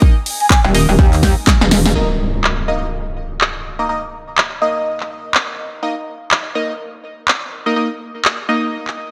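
Bass house at 124 BPM with swung 16ths, swaggering and bouncy in this cut from a longer piece: a nasal, band-passed sawtooth chord stab with phaser, chorus, 12-bit grit and tape echo pumps throughout, a punchy electronic kick sits up front until 1.6 s, a house kit of handclaps, filtered hi-hats and snare carries the groove, a hollow concert flute with tape echo appears briefly in the background, a metallic, saturated FM wobble bass enters at 0.6 s and wobbles through the rest of the opening section, and an electronic impact hits at 2.0 s as the second section begins, all set in a lush hall reverb.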